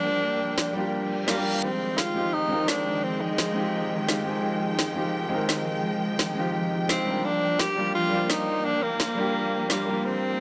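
Liquid drum and bass at 171 BPM in F dorian, rolling and soulful, this short excerpt sets a warm, jazz-style tenor saxophone with light vibrato and a smooth top up front, carrying the melody from 0.0 to 4.3 seconds and again from 6.9 seconds, over a clear, open concert grand piano with deep bass and a distant, lush bowed string section holding sustained chords. An overdriven, woody electronic snare enters at 0.6 seconds, a brief reverse cymbal sweeps in at 1.1 seconds, and the harmony moves from Gm7 to Fm9 before returning to Gm7. The piano and saxophone carry digital delay, the piano is also low-pass filtered, and a huge ambient reverb with a long 4.6-second tail surrounds the whole.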